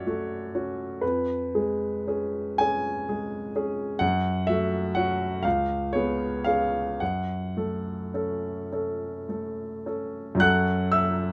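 Mournful and melancholic, this brief passage of a romantic nocturne for solo piano unfolds in F# minor at a slow 34-43 BPM, counted in dotted quarters within a 12/8 metre and shaped by free rubato. A single grand piano carries the whole piece from 0.0 to 11.3 seconds, its tone warm, smooth and vintage, set up front in the sound with a light reverb around it. The playing spans from C#2 in the low bass up to F#6, giving the sorrowful lines a deep foundation and a high top. The harmony circles closely around the home key, moving from F# minor to C#7 over E#, back to F# minor, briefly to a bare C#5 sonority, and home again to F# minor at 7.0 seconds. Cut from a longer work, this fragment feels quiet and introspective, leaving the melancholy hanging in the air.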